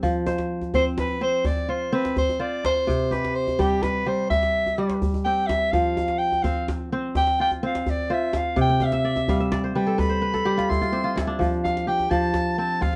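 A flowing 12/8 pulse drives this warm West African traditional piece, cut from a longer performance: a tight, cracking djembe, compressed and saturated with metal rattles, sits beneath a crisp, ringing kora whose fingerpicked arpeggios stand up front. From 0.7 seconds a breathy soprano saxophone carries a mellow, jazz-style solo with vibrato and a soft attack, whispered and intimate yet distant and roomy, while the kora adds a fill from 8.7 seconds until a new section begins at 11.4 seconds. A moderate studio reverb surrounds the ensemble.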